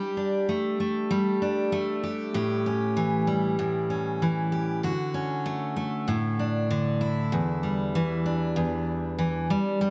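A picked steel-string acoustic guitar carries this short pop excerpt entirely on its own, its jumbo body giving a warm, full-bodied, up-front tone with the freshness of new strings. The mood is carefree and easy-going, moving at 97 BPM in 4/4 with a gentle swing on the sixteenth notes. The guitar ranges from E2 up to G4, working through Gsus2, A7, Dmaj7 and Asus4 before a new section opens on Em7 at 7.3 seconds. A moderate plate reverb with a long tail surrounds the guitar, and a faint mains hum sits beneath it. Cut from a longer piece, the clip runs just under ten seconds.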